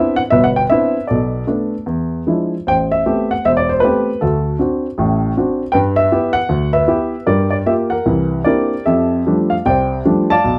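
Solo jazz with a playful, swinging mood at 155 BPM, this brief 10.6-second excerpt from a longer piece features a dark, mellow baby grand piano placed up front and intimate, its short sustain and audible action noise heard in light reverb as it moves through a swung, rubato 4/4 progression from Cmaj9 through Am9, D7, G6 and C9 before settling on F69 at 8.9 seconds.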